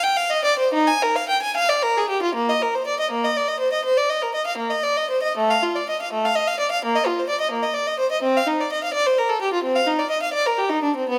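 A single violin, clear and close with smooth, even bowing and vibrato, carries this flowing, radiant baroque-style suite movement entirely on its own, ranging from A3 to Ab5. In Bb major and 12/8 at 82 BPM, the playing breathes with rubato and uneven beats, giving the line a spoken, unhurried quality. The solo voice sits up front in a moderate recital hall reverb that lends a gentle halo, in this brief passage cut from a longer piece.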